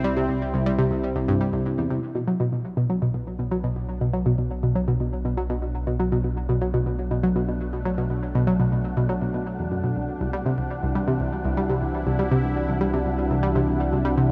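A bright, detuned analog pluck sits up front with a filter-swept riff carried on chorus and tape echo, driving this luminous, expansive stretch of ambient, sequencer-driven space music at 121 BPM. Alongside it, a resonant, evolving pad with ring modulation fades in from 2.0 s over a move from C to Bm7, while a deep, round analog bass holds the low end. At 4.6 s an airy, breathy wind-like noise texture enters in the background, all of it set in a lush hall reverb in this cut from a longer piece.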